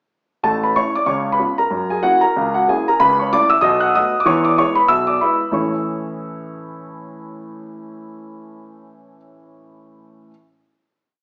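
A warm, polished grand piano carries this short, exuberant stride jazz piece alone, its present, up-front tone ringing with long sustain as it plays the tune in octaves over a swinging stride bass through a brisk chord run, settling onto a final A chord at 5.5 seconds, all in a large, reverberant room heard through a small speaker.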